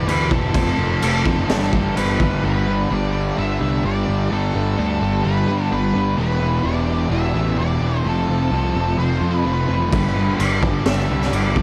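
An up-front, punchy fuzz bass drives this blissful, wistful shoegaze and dream pop excerpt at 128 BPM in G major, alongside a dark octave-fuzz lead guitar melody with tape echo, a thick chorused fuzz riff and a crunchy overdriven riff with reverse reverb in the background, a very quiet bright double-tracked stack guitar and a compressed twelve-string arpeggio, while a gritty, boomy garage drum kit with a high-tuned snare plays from 0.1 to 2.3 s and returns at 9.9 s over a dark, dry production.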